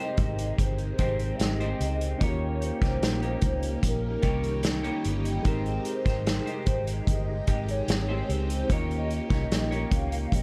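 A hollow, woody clarinet-like synth lead carries the melody in this hazy, sunny bedroom-pop excerpt, sounding over a twangy electric guitar at the edge of break-up, soft electric-piano-like synth keys and a swirling string machine, with a muted fingered bass and a loose indie drum kit joining at 0.2 seconds. The tune sits in Ab major at a relaxed 74 BPM in straight 4/4, moving between Abmaj7 and Eb7. The lead warbles with vibrato, ensemble chorus and tape echo, while the picked, compressed guitar wavers through analog chorus and a drifting pitch. In the background, the mellow keys carry chorus and a cassette-tape tint, and the sawtooth string machine holds bright sustained chords through a phaser. Up front, the foam-muted bass is round and dark, and the kit offers a punchy kick and medium-tuned snare with a rolled-off top, heard in a distant, roomy studio space. The overall production is dry, dark and warm.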